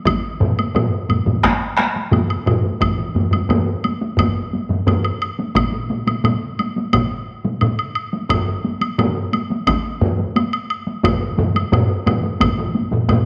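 A close, dry taiko struck with hard sticks sounds in this driving, powerful Japanese traditional taiko ensemble piece. It enters at 0.4 s. Around it, three more taiko groups played with heavy sticks build a thick drum texture. One is compressed and saturated, one sounds distant in a large room yet up front, and another carries the feel of a small room. A woody, close woodblock ticks through the whole passage at a straight 88 BPM in 4/4, and one of the heavy-stick taiko parts drops out at 12.6 s. A wet echo-chamber studio reverb with a 1.6 s decay gives this fragment of a longer piece a roomy, booming sound.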